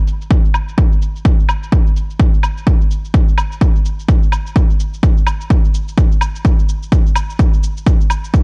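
The recording has a digital ambience and a dark top end, with nothing above 10.9 kHz. This is a gritty, swaggering house excerpt at 127 BPM in 4/4, with a 59% swing on the sixteenths. A layered electronic kick drum sits up front: punchy, overdriven and re-recorded in a large room, it dominates the mix from 0.3 seconds on. Behind it, a tape-toned pair of cabasa and woodblock, also electronic and layered, comes in at 0.1 seconds and sits much lower in the balance, softened by a low-pass filter. The short cut runs as a single section to 8.4 seconds.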